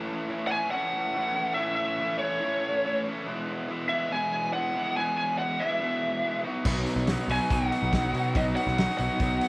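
A bright, double-tracked garage guitar riff opens this driving, sunny classic rock piece at 141 BPM in E major, joined at 0.5 s by a lo-fi lead guitar through a small cranked amp playing an up-front melody over chords moving from A to E to B. Near the end, a compressed fuzz guitar riff slips into the background, and at 6.7 s a punchy fuzz bass and a cloth-damped, thuddy drum kit enter, the kit saturated and gritty with a fat snare, tight kick, dark cymbals and a rolled-off top. A moderate echo-chamber reverb surrounds the parts.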